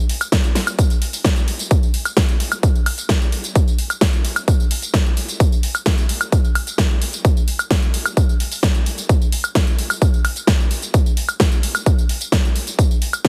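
A straight 4/4 groove at 130 BPM drives this euphoric, uplifting EDM excerpt, with a punchy electronic kick entering at 0.3 seconds and sitting up front, louder than the rest of the kit. Around it, a big-room dance drum kit plays from 0.1 seconds with a huge snare, metallic hi-hats, tambourine and woodblock, both drum parts layered and produced and re-recorded in a small room. The dry mix carries a heavily compressed radio sound throughout its 13.3 seconds.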